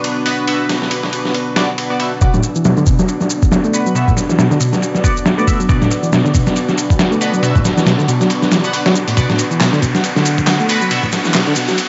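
Raw and energetic, this breakbeat excerpt runs at 138 BPM in 4/4 with a swung sixteenth-note feel, centred on B minor. A dusty, sampler-style soul drum kit sits up front, its thumpy kick, medium-tuned snare, hi-hat and ride sounding compressed and overdriven, as if re-recorded in a small room. Beneath it, a lush, thick pad of detuned sawtooth and square waves with a sub octave holds sustained chords through chorus, phaser, 12-bit sampler grit and sidechain pumping. A nasal, band-passed chord stab with a fast attack and decaying tails adds phased, delayed accents. At 2.2 seconds a reedy electric piano enters with a low riff under fast tremolo and overdrive, joined by layered electronic shaker and handclaps, and a build-up begins as filter sweeps move over the drums and the electric piano. A riser arrives in the background at 5.7 seconds, and the mix carries light digital ambience with its top end rolled off above 7.8 kHz.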